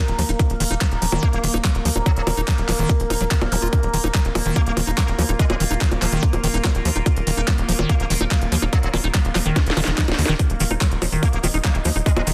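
Psychedelic trance with a hypnotic pull, where an up-front electronic kick and a tape-warm garage kit of cracking snare, crisp hats, bongos and handclaps are joined by a punchy sawtooth sequencer bass, a squelchy, resonant acid riff trailing dub echo, a saturated metallic wobble line tucked in the background and a pumping drone of moving overtones washed in phaser and chorus, while faint electronic zaps and swells flicker briefly, a drum fill arrives at 9.6 seconds and a grainy, dry tube shaker joins at 10.4 seconds.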